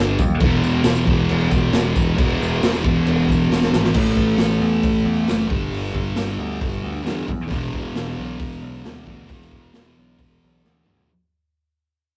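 A rough rehearsal-room recording with warm saturation and a moderate small-room reverb frames this raw, rowdy garage rock fragment, where a thick, double-tracked fuzz guitar riff sits up front over a bright, punchy, direct picked electric bass and a pumping acoustic kit of boomy kick, medium-tuned snare, hi-hat, toms and crash with a rolled-off top, while a jingly, close and dry tambourine hovers in the background until 7.2 seconds, and a drum fill at 3.5 seconds leads into a fade-out that begins at 4.0 seconds.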